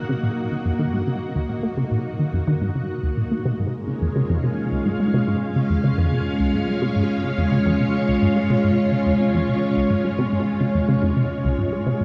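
This fragment of ambient, sequencer-driven space music opens on a lush string machine playing sustained chords, with its full ensemble sound, slow attack and ensemble chorus sitting up front. A tenth of a second later, a resonant blip pluck enters with a squelchy, detuned sawtooth riff in the low register, its fast attack and short decay colored by chorus, phaser and analog delay. A filter sweep runs across this arpeggiated synth line for the whole passage. The music moves at 107 BPM in a straight 4/4, with the harmony resting on Eb minor before shifting to Db at 3.5 seconds. A huge ambient reverb and a worn cassette-tape warble with drifting pitch wrap the sound, giving the expansive, hypnotic mood a hazy, aged quality.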